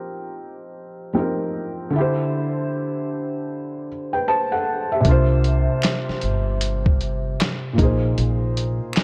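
Mellow and cosy, this lo-fi hip hop excerpt moves at 77 BPM with a swung 16th-note feel in C mixolydian, opening on a soft, thick-felt upright piano coloured by cassette tape and a filter sweep over sus4 ninth chords. At 5.0 seconds a muffled, pitched-down sampler kit of thumpy kick, snare, hi-hat and handclaps arrives with vintage 12-bit grit, joined at 5.1 seconds by a woody pizzicato upright bass and shortly after by a very quiet, close finger snap. Light small-room reverb wraps the dark production.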